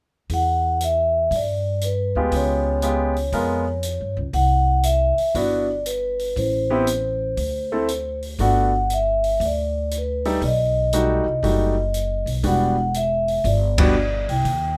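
Dry and close in sound, this moody, cool small-group swing and bop excerpt in E minor moves at 119 BPM, with a mellow, ringing soft-mallet vibraphone carrying the melody up front over a woody, growly pizzicato upright bass and an open drum kit of dark cymbals and boomy kick, while a clear concert grand with audible action noise and long sustain joins at 2.2 seconds ahead of a band accent at 13.7 seconds.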